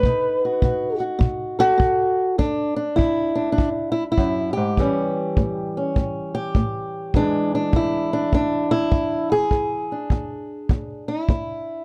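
A dark, warm production with light reverb gives this fragment of a longer piece an intimate, lived-in sound. It is laid-back, soulful acoustic country blues in 4/4 with a loose swing on the eighth notes. An old ladder-braced acoustic guitar, fingerpicked and placed up front, carries the melody from the low E2 up to B4, its old strings sounding woody and boxy. It opens with a short steel-string solo over B7 for the first 2.4 seconds, then moves through the next section over E7, A7 and back to E7. A kick drum played with brushes sits just behind it throughout, tight and smooth in a small room, and drops out at 11.5 seconds while the guitar rings on to 11.8 seconds.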